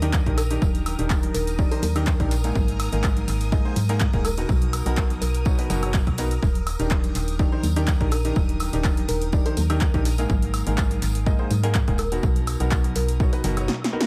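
Piano house at 124 BPM in Eb major, feel-good and euphoric, with a light swing on the sixteenths and an echo-heavy digital ambience around it. A clear concert grand piano drives the riff with deep bass and short sustain, its chords cycling through Ebmaj7, Absus2 and Bmaj7 and trailing dub echo, while a hollow, organ-like FM bass with a fast, decaying attack anchors the low end under sidechain pumping. An overdriven, punchy electronic kick sits up front from 0.1 seconds, alongside a punchy, overdriven analog drum machine of handclaps, hi-hat, snare and woodblock with a short room on the snare, clap and hats, plus bright, close and dry tambourine and congas tucked in the background. Behind them, a shimmering vintage string machine holds sustained violin chords with a soft attack, ensemble chorus and a moving notch, and a bell-like, sparkling FM electric piano plays a melody on Bb4 with chorus, tremolo and dub echo. 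The cut ends on a drum fill from 13.7 to 14.1 seconds.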